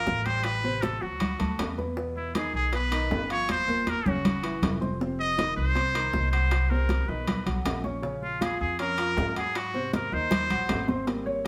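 A nasal, brilliant trumpet with a straight mute leads up front, singing a jazz melody with vibrato and scooped notes in this lively, sunny Afro-Cuban jazz excerpt at 158 BPM. Beneath it, a concert grand piano with deep bass and audible action noise plays intimate accompaniment, while a woody pizzicato upright bass anchors the low end. Thick-skinned, high-tuned congas sit close and dry, round low-tuned bongos stay in the background, and ringing metal-shell timbales open into a stone room's moderate reverb, with a drum fill arriving at 3.5 s.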